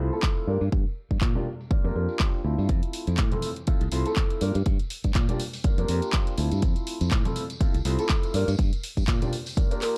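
A swung 4/4 groove at 122 BPM drives this feel-good, funky filtered disco house excerpt, with a punchy, tape-warm electronic kick up front and a house kit of handclaps and pumping hi-hats alongside a distant tambourine and congas, while a bright, growly fingered electric bass and a dark, mellow baby grand piano, gritty with 12-bit sampler texture and phaser, pump through a low-pass filter sweep over Gm7 and Fmaj7 in a dry, hardware-rough mix.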